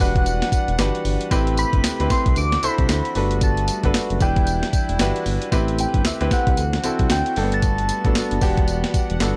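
A bouncy, confident new jack swing groove at 114 BPM opens at once with a crisp, thumpy 8-bit drum machine of handclaps, hi-hat, kick, snare and tambourine sitting up front, a smooth sawtooth synth bass with vibrato, a clear, intimate grand piano whose action noise is audible, and a brass ensemble holding loose, classical-style chords in the background. Over this, a round, keys-like FM synth lead with chorus and delay carries the melody, its detuned notes striking quickly and decaying, while the 16ths swing at 60% through a looping Em9, Am9, D9 and Gmaj9 progression. The piano adds a polished fill at 4.7 seconds in this dry cut from a longer piece.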